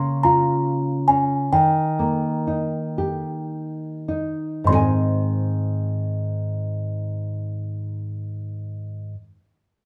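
Gentle and innocent, this short lullaby excerpt in 6/8 pairs a delicate, tinkling music box carrying the melody high above a dark, full-bodied nylon-string guitar that sits up front in thumb-plucked accompaniment, both ringing through a stone room reverb as the pace slows over the first 4.7 seconds before settling on a resolving chord.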